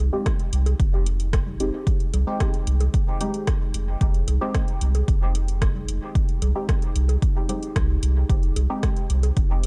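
Dub techno at 112 BPM in F minor, hazy and deep, holding a single Fm9 chord as an overdriven, punchy kick sits up front with a round sine sub bass, while detuned, ring-modulated chord stabs with chorus, phaser and dub echo pump against the sidechain, a tape-warm vintage rhythm box carries metallic hi-hats and rim clicks through dub echo, electronic bongos and congas ride dub echo in the background, and a warbling sawtooth pad with chorus and built-in reverb sustains beneath it all in a dark, dry mix.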